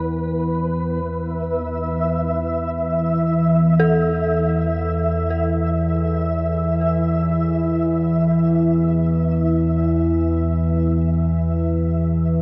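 A nasal analog drone sits up front in this desolate, dark ambient passage cut from a longer piece, its sawtooth and pulse-wave tones shifting through pulse-width modulation and a moving notch while chorus adds a mellow sheen. Around it, a grainy, flickering texture of detuned triangle tones hovers higher up, carrying its own built-in reverb and sitting much lower in the mix. At 3.8 seconds an eerie, inharmonic FM bell enters with arpeggios, treated with chorus, tremolo and delay, and it lingers as a ghostly presence. The harmony moves from an open E fifth to an Esus4 at 1.0 second, and from that point both the texture and the bell fade out over the rest of the 12.4 seconds. The whole recording is bathed in a huge, wet reverb and has the worn, warbling pitch drift of old cassette tape, which deepens its unsettled, free-floating atmosphere.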